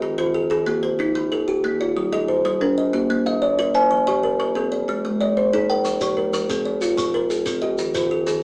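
Hypnotic southern African traditional music in a straight 12/8 at 124 BPM, built on an mbira-style interlocking cycle in F equiheptatonic tuning, where two up-front kalimbas play ringing arpeggios from the start, one woody with a solid-board body and an airy thumbnail pluck, the other bright with a hollow-box resonance, while a grainy, mellow shekere joins at 5.8 seconds, all heard as a live band in one room through a small-speaker sound with a wet studio reverb, in this short cut from a longer piece.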